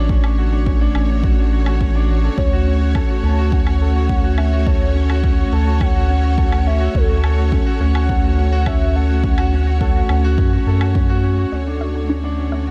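A dry cut from a longer piece of tender, hopeful piano and strings electronica, built on a round, mellow analog bass that pumps against a punchy, layered electronic kick, with a filtered woodblock beneath. A clear concert grand piano riff, shaded by a low-pass filter and digital delay, rests over lush, distant bowed strings holding sustained chords as the harmony moves from Dmaj7 to F#m/D, and a velvety, detuned synth lead with chorus carries the melody from 2.4 seconds. At 11.5 seconds a bright, nasal analog pluck enters in the background with chorused arpeggios, a filter sweep, delay and sidechain pumping.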